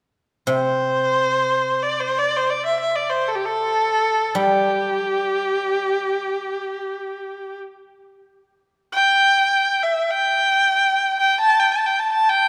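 From 0.5 seconds, a smooth, clear bowed erhu sings a pastoral yet festive melody in free time, its vibrato and portamento up front, over ringing, silvery fingerpicked guzheng accompaniment low in the register that drops away at 8.1 seconds, leaving the solo erhu to carry this traditional Chinese chamber excerpt, tuned to A4 = 439 Hz, through a lush concert hall reverb until 12.5 seconds.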